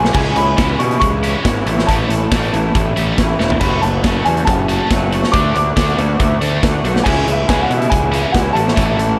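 A dark, woody upright piano carries the melody from the first moment of this upbeat, jangly indie rock excerpt in A major, moving at 139 BPM in a straight 4/4. Alongside it, a fuzz-drenched picked bass growls up front through overdrive. A big acoustic rock kit with a punchy kick and medium-tuned snare plays kick, snare, hi-hat, crash and toms, while a twangy, slightly broken-up electric guitar plays a riff in the background through ensemble chorus. At 0.1 s a scooped, high-gain guitar joins with a bright, distorted riff, touched by subtle chorus and ambient delay. The piano's mellow, short-sustained notes sit under analog chorus and a diffuse delay, and a drum fill arrives at 3.4 s. The chords move C#m, A, F#m, D and back to C#m and A, and a huge ambient reverb of 3.9 s gives the mix a dreamy, soaked quality.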